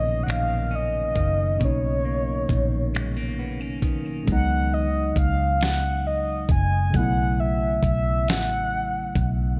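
Slow six-eight R&B excerpt at 45 BPM, tender and sensual, in which a round, horn-like sawtooth synth lead with a soft attack, vibrato, chorus and delay carries the up-front melody over a worn, slightly out-of-tune tine electric piano, a dark, foam-muted vintage fingered bass and a gritty, compressed sampler-style soul kit of thumpy kick, fat snare, hi-hat and finger snaps entering at 0.3 s, while a clean, picked electric guitar with delay plays a second line until 4.9 s, the dreamy mix soaked in plate reverb as the harmony moves from Cbmaj9 to Db9sus4 at 4.3 s and on to Cb9sus4.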